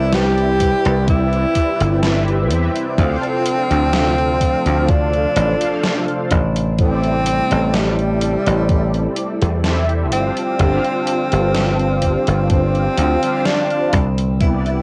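A breathy, up-front tenor saxophone carries a nostalgic, melancholic vaporwave melody at 63 BPM in A minor, with scooped notes and vibrato over a punchy, foam-muted slap bass, mellow detuned synth brass with ensemble chorus and analog delay, a very quiet warbling pad, and a gated 80s drum machine with a thumpy electronic kick, all moving through Cmaj7, Dm7, Am7 and G7sus4 in this excerpt, home-recorded on cassette.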